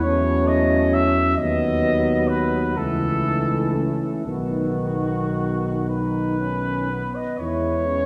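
Warm and lyrical, this brief hymn-like classical passage for brass band unfolds in a rubato 6/8, with a mellow cornet carrying the melody up front over a punchy, dark tuba bass, while a tight French horn section with light vibrato sings a second line in the background alongside a smooth-topped euphonium and a soft-attacked trombone with vibrato, all heard from further back in a reverberant church space as the harmony comes to rest on E at 7.4 seconds.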